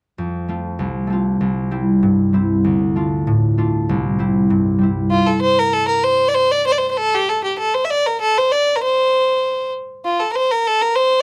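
A lightly swung 4/4 at 195 BPM drives this bright, rollicking Celtic folk passage in F major, cut from a longer piece. A fingerpicked concert harp opens alone at 0.2 seconds with ringing accompaniment over F, C, Dm and C. At 5.1 seconds a single bowed fiddle takes the melody, rich and smooth with light vibrato, and carries on alone once the harp stops at 7.8 seconds, both up front in a dry, close 1970s-style studio sound with light reverb.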